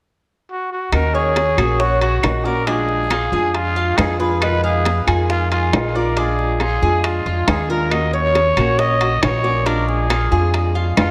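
A raspy, growling trumpet with light vibrato leads this danceable, warm excerpt of Cuban son and guajira at 137 BPM in Eb harmonic minor, its up-front solo line touched with delay from 0.5 s over Ebm7, Bb7 and Fm7b5 chords. At 0.9 s a thumpy, dark gut-string upright bass enters up front, along with boxy fingerpicked flamenco guitar with audible finger squeak, tight high-tuned bongos, woody claves and ringing metal-shell timbales in the background, while a metallic double-string Cuban tres picks arpeggios from 1.1 s. A wet church reverb and cassette tape character soak the whole mix in a dreamy haze.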